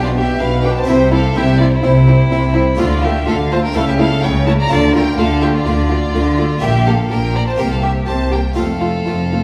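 Classical, a festive and lively baroque-style concerto movement cut from a longer piece, moving at 125 BPM in a straight 4/4 as the harmony travels from G/B through Dm and A/C# to a close on F. A focused chamber violin section and a smooth solo violin carry the melody over a brilliant Flemish-style harpsichord in the background, with lush bowed cello and up-front double bass sections anchoring the bass. A second violin line and a distant viola section join at 0.2 s, and the whole ensemble sits in a wet recital-hall reverb, heard from further back in the room.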